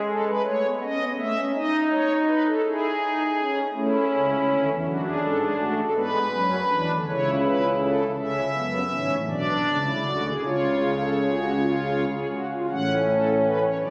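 Lively and joyful, this short cut from a longer baroque-style three-part fugue for solo pipe organ moves at 54 BPM in a straight 6/8, opening in A major before turning to F# minor at 8.2 s. The organ's string stops and celeste give a soft, shimmering, romantic voicing that sits up front, spanning from a deep F#1 to F#5. A long, wet church reverb surrounds the playing, and the phone capture in the room leaves the top end dull and muted.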